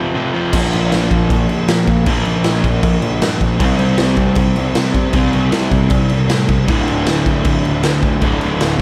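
Upbeat and energetic, this short punk rock cut opens with a brief break of two overdriven guitars, one crunchy and one a dark semi-hollow, sounding an F5 chord, before a growly fuzz bass and a raw, up-front garage drum kit with punchy kick, crash cymbal and a gritty stone-room sound join at 0.5 seconds to drive the riff through Bb5, C5 and D5 power chords in a dry mix.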